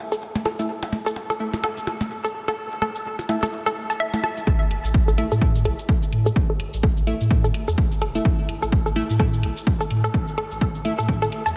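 A hollow, bouncy square-wave pluck carries the riff in this quirky, sparse minimal techno excerpt at 127 BPM in 4/4, with a 58% swing on the sixteenths, its detuned, wave-folded tone thickened by chorus, tape echo and sidechain pumping. Metallic, overdriven electronic shaker and hi-hat run alongside it from the start, while overdriven percussion blips with tape echo flicker only through the opening stretch, and a crisp, warbling wavetable chord stab with a moving notch and tape echo adds vintage digital colour. At 4.5 seconds a saturated, thick sub bass with sidechain pumping and a punchy, up-front electronic kick drum arrive, the kick sitting loudest in the mix. From that point the section builds with a filter sweep, and the synth arpeggio sound carries filter sweeps across the whole passage. The mix is dreamy and high-pass filtered, soaked in a moderate cathedral reverb with a 5.7-second tail, giving the sparse parts a distant, cavernous glow.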